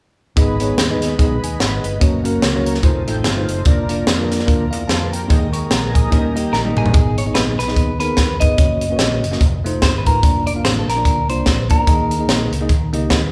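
Fervent and soulful, this uptempo gospel passage swings at 146 BPM in 4/4, cut from a longer piece and played live by a band in one large studio room with a moderate reverb. A bell-like tine electric piano carries the accompaniment throughout, over a dark, round, punchy fingered bass and an airy, crisp fusion drum kit that sits up front with a high-tuned snare, punchy kick, hi-hat and toms. A smooth tonewheel organ holds sustained chords through a slow rotary speaker and chorus vibrato, adding a fill around 2.8 seconds before dropping out at 7.0 seconds. The harmony moves from G#m through F#, F7 and A#/E# to a D#sus4 that resolves to D#, and the cycle repeats in the second half. A bright, compressed, picked clean electric guitar plays a brief second line from 6.1 seconds, and as a drum fill begins at 6.5 seconds, another bright, compressed, picked clean electric guitar takes the melody with a twangy spring reverb, tucked in the background.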